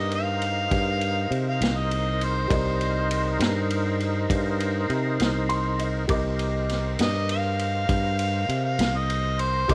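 A slow 12/8 blues at 67 BPM in C minor, this smoky, soulful fragment from a longer piece rides a punchy kick, ride cymbal and medium-tuned snare from a vintage kit, with a round, dark fingered electric bass up front, all within a small room. A mellow, overdriven harmonica takes the solo with soft attack, scooped notes and light vibrato over a Cm9 chord, while a tonewheel organ holds sustained chords through a slow rotary speaker and chorus vibrato. A woody, boxy upright piano sits in the background with audible action noise and adds a fill from 5.2 to 6.1 seconds.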